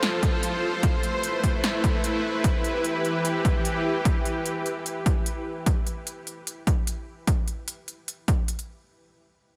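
A half-time 4/4 groove drives this short, heavy and menacing dubstep fragment, cut from a longer piece. A big-room dance drum kit opens the fragment with layered, crisp hi-hats and a punchy snare that carry an overdriven grit and the sense of being re-recorded in a large room, and an electronic kick drum, punchy, overdriven and placed up front, joins at 0.2 seconds. Over this, a lush supersaw pad with a sub-octave foundation and detuned unison sawtooth voices holds sustained chords with a slow attack and long release, pumping against the sidechain. The pad moves through F, Amadd9 and Em before falling away at 5.6 seconds, leaving the drums to carry on alone until 8.7 seconds. The whole mix is soaked in a huge, dreamy ambient reverb that lends the dark material a hazy, cavernous sheen.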